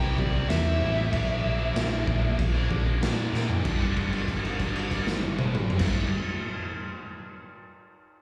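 Quiet-loud alternative rock at 95 BPM in a short, anthemic and cathartic cut from a live club gig heard through the venue's PA, where a dark, overdriven lead guitar solo with slapback echo and digital delay opens over bright, distorted fuzz and scooped high-gain guitar riffs set in the background, a growly, punchy fingered electric bass, and a gritty, lo-fi, muffled garage drum kit up front that enters at 0.2 seconds and plays a fill at 3.3 seconds as the chords move from C to Bb to G, leading into a held note at 3.6 seconds.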